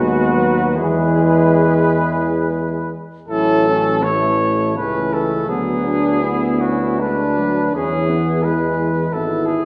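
Tender and serene, this brief, hymn-like classical excerpt for brass band moves in an unhurried, rubato triple time. A mellow cornet carries the melody up front, its soft attack and light vibrato giving the line a gentle, distant glow. Behind it a flugelhorn sings a second line with a warm vibrato, while a single punchy trombone with a smooth top and a tight, clear trombone section supply the inner accompaniment. A tuba anchors the bass up front with a warm, lightly vibrating tone. All five parts sound together from the opening to roughly 9.7 seconds, bathed in the lush reverberation of a recital hall or church, with the harmony settling onto an A chord at 3.3 seconds before turning toward Bm/D and E.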